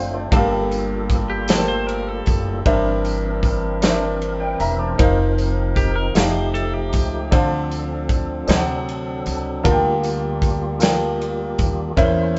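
Rolling along in a slow 6/8 at 52 BPM, this jubilant, soulful gospel excerpt sets a woody upright piano up front over a fat tonewheel organ swirling through a slow rotary speaker and chorus vibrato, a pizzicato upright bass, and a punchy studio drum kit with bright cymbals, joined at 0.7 seconds by a distant, jingly tambourine while a twangy, compressed twelve-string electric guitar adds a picked second line from 1.3 to 7.3 seconds, all in a live, lightly reverberant room as the chords move from Gm9 through F9 to Gm9/D.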